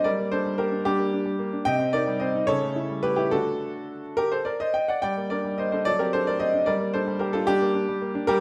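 A 6/8 pulse, stretched by rubato, carries this serious, restless classical-period piano sonatina fragment, cut from a longer piece. A solo concert grand plays throughout the 8.4 seconds, sounding clear and worn with a deep bass and short sustain, placed up front in a wet recital-hall reverb.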